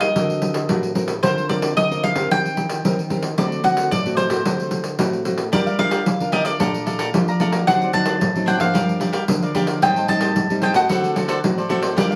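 A round, double-stringed mandolin carries the melody up front with a plate reverb sheen in this nostalgic, bittersweet samba-choro excerpt at 112 BPM, over fingerpicked classical nylon-string guitar, a jingly, band-limited vintage pandeiro, and a crisp picked cavaquinho that joins at 5.5 s, all moving through minor-leaning chords such as Gm7, Am7b5 and D7b9 in a small, modestly reverberant room.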